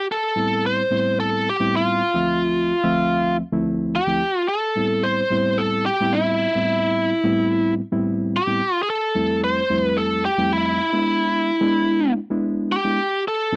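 A bright, biting overdriven electric lead guitar carries the picked melody up front in this mournful, smoky blues fragment in A minor at 109 BPM with a straight 4/4 feel and tuning at A4 = 438 Hz, joined at 0.4 s by a reedy, lightly overdriven electric piano heard through its built-in speakers as accompaniment over Am7, Dm7, Fmaj7 and E7 chords, all captured in a dry, close 1970s-style studio sound.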